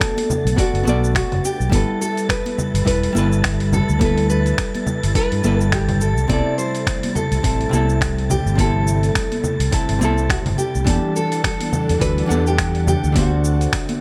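Sunset chillout in G major at 105 BPM with a 16th-note swing, sunny and warm, drifting through chords from Bm7 to D7. A bright, fingerpicked nylon-string guitar carries the melody with sampler grit and delay, over dark, clean chords from a hollow-body jazz guitar, a silky string machine with ensemble chorus, and a breathy, wind-like noise texture in the background. A growly fingered electric bass sits up front from 0.5 s, while an overdriven, dusty sampler-style kit of finger snaps, hi-hat, shaker and congas, a thumpy overdriven electronic kick, and a separate set of acoustic congas from 0.2 s keep the groove, all in a light reverb.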